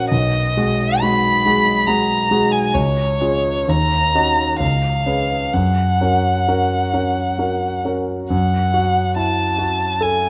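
A rich, smooth violin carries a serene, lyrical melody with even bowing and vibrato, up front in the mix. A warm concert grand piano accompanies it in this romantic classical duo, sounding intimate and natural with deep bass and audible action noise. The passage, cut from a longer piece, moves in a flexible, rubato three-beat metre under light reverb and close, detailed miking, and turns to a minor chord at 8.3 seconds.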